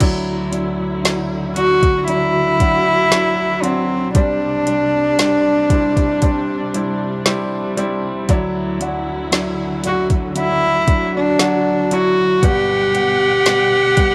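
Light reverb and a small-room ambience frame this tender, hopeful pop ballad excerpt at a straight 58 BPM in 4/4, where a dark, mellow baby grand piano accompanies and a lush string section with a smooth top holds sustained chords, moving from Dadd9 through Csus2 and back to Dadd9 before reaching Gmaj7. A produced electronic R&B kit sits up front with a soft kick, woody snare and metallic hats. From 1.6 seconds an intimate, slightly nasal solo cello carries the melody, its airy bowing, light vibrato and boxy closeness touched by a slapback echo.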